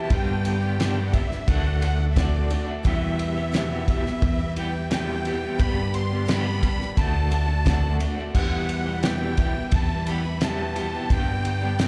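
A reedy musette accordion carries the melody from the start with slapback and tape echo, over a shimmering, octave-doubled twelve-string acoustic guitar in the background, a twangy, slightly broken-up electric guitar riff with tremolo, and a very quiet, lush bowed string section holding sustained chords. In this wistful, reflective slice of folk rock and heartland rock, a round, punchy fingered bass and a cloth-damped drum kit with a fat snare and dark cymbals join at 0.1 seconds, moving through G, D and E minor. The whole band sounds like a live club gig heard through the venue's PA, with a small room reverb.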